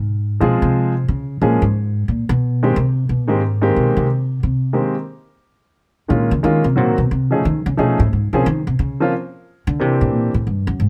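A relaxed swing at 179 BPM in 4/4 drives this short jazz piano trio excerpt in Ab major, where an up-front, woody upright bass takes a plucked solo across the full 10.9 seconds while a clear, natural grand piano carries the melody from 0.4 seconds, moving through chords such as Dbmaj7, Abmaj9 and F7alt in a dry, closely miked sound.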